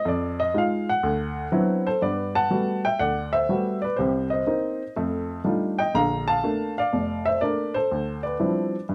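A swung 4/4 lilt drives this brief solo jazz passage, cut from a longer piece, with a sophisticated, swinging mood carried by a single baby grand piano that runs from 0.0 to 8.9 seconds. The piano sits up front with an intimate, natural tone, short sustain and audible action noise, moving through rich harmony such as Fm7, D13, Gmaj9 and Bbmaj7 before settling on Dm11. A light reverb and dark, warm production round out the sound.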